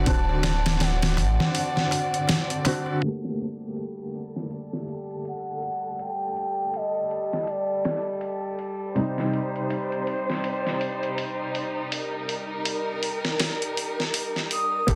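A gritty, compressed sampler-style drum kit with a thumpy kick and fat snare anchors this cinematic, melancholic trip hop excerpt at 81 BPM in G harmonic minor, swung on the 16ths. A worn, woody upright piano with tremolo and 12-bit grit and a lush, bowed violin section carry the harmony from D7 through Gmadd9 to Cm, while a breathy sine lead with chorus and tape echo sings the melody until 8.6 seconds and returns briefly at the very end. A round dub sub bass sounds only in brief moments, a very quiet clay-shell darbuka adds hard-handed hits up to 3.0 seconds, and the whole sits in spring reverb and a dense, heavily limited master, with a break from 1.6 seconds followed by a long filter sweep.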